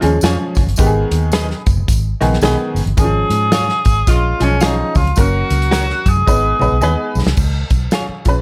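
A forceful tenor saxophone with light vibrato and scooped notes takes the melody from 3.0 to 7.2 seconds in this short, urgent cut of 1960s-style soul, riding a swung 4/4 groove from a natural drum kit with a punchy kick, a round, foam-muted electric bass, and a clear, woody, slightly detuned upright piano. Bright, clean electric guitar stabs with spring reverb sit alongside quiet, low-tuned congas, a jingly tambourine in the background, and brief touches from a dark saxophone section. A drum fill and piano fill lead into a piano solo at 7.4 seconds, all captured dry and driving.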